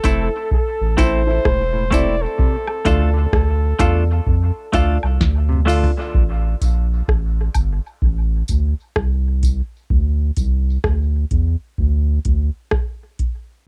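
Heavy and deep, this dub reggae excerpt moves at a slow 64 BPM in A minor, with a swung sixteenth-note feel and a dry, close sound that recalls a 1970s studio. A flugelhorn carries the melody with light vibrato, scooped notes and a smooth top, while a clean, compressed semi-hollow electric guitar and a dark, boxy baby grand piano with audible action noise add accompaniment and stabs, all three soaked in dub echo. A stringy, percussive clav joins at 1.5 s with arpeggios in the background, also echoed, as the chords move from A minor to D minor. Up front, an overdriven analog rhythm box with a deep kick, crisp snare and metallic hats drives the groove alongside a round, sustained sub bass, with maracas, handclaps, tambourine and woodblock sitting quietly behind. After a drum fill at 5.2 s the melodic parts drop away into a break of drums, bass and percussion. The percussion fades out at 10.6 s, and from 9.9 s the harmony falls silent while the sub bass continues until 12.5 s and the rhythm box carries on until 13.5 s.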